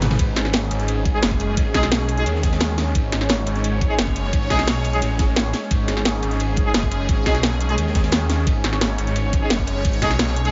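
A snarling, overdriven saw bass growls up front through this dark, futuristic drum and bass excerpt, its detuned, saturated tone cut by a moving notch. Beneath it, a sweeping, resonant pad holds chorused chords with a sidechain pump, alongside a knocking electronic kick. The excerpt opens with a drum fill, and a cracking, metallic drum and bass kit is layered over a very quiet, gritty breakbeat kit with dark cymbals and a high-tuned snare. From 1.1 s, a mellow brass section adds tight, classical-style stabs with light vibrato and digital delay, all in a small, lightly reverberant studio space with a rolled-off top.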